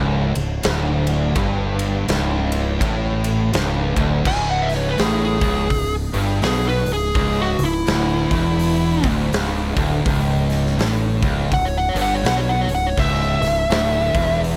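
Three picked guitars and a growling fingered electric bass open together on a heavy C# minor riff: a warm fuzz guitar, a thick, dark fuzz guitar and a double-tracked, overdriven semi-hollow guitar with a bright hollow-body edge, all sitting in the background, while the overdriven bass is up front with a direct-and-amped bite. A big rock drum kit enters at 0.4 seconds, acoustic and recorded in a big room, with a punchy kick, a medium-tuned snare, hi-hat, ride and bright crash cymbals. This is sludgy, hypnotic stoner and doom metal at 83 BPM in 4/4, with a swung eighth-note feel and a small room ambience around the band. At 4.3 seconds a compressed fuzz lead guitar takes a solo up front, its distortion trailed by analog delay, ranging from E4 to G#5 above the low riff. The fragment is cut from a longer piece and runs to 14.6 seconds.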